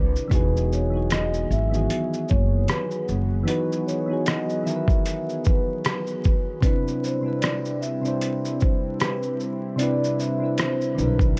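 A gritty, overdriven sampler-style drum kit with a thumpy kick, hi-hat, rim click and shaker sets a swung 76 BPM groove in 4/4 for this mellow, dreamy lo-fi hip hop excerpt in E major, where a woody, growly pizzicato upright bass sits up front until 3.4 s and returns briefly at 11.0 s, round, chorused electric-piano-like synth keys and a ringing soft-mallet vibraphone with slow motor vibrato and analog delay drift over Emaj9 moving to Cmaj9 at 6.6 s, and a warbling, detuned tape-like pad lingers in the background beneath a layer of vinyl crackle.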